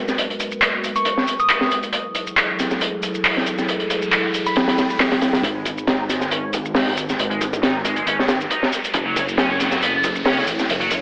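A crunchy, saturated breakbeat kit with a punchy kick and high-tuned snare sits up front alongside electronic shaker and handclaps in this gritty, raw breakbeat excerpt, all riding over a deep, moody analog pad that pumps beneath them with a cassette-worn haze. A crystalline FM synth bell warbles through chorus and tremolo in brief phrases from 1.0 s, and a very quiet riser creeps in at 3.0 s to lead into a build-up. At 5.4 s a thick, menacing detuned saw bass arrives, soon joined by a scooped, high-gain, double-tracked electric guitar riff that runs through a filter sweep.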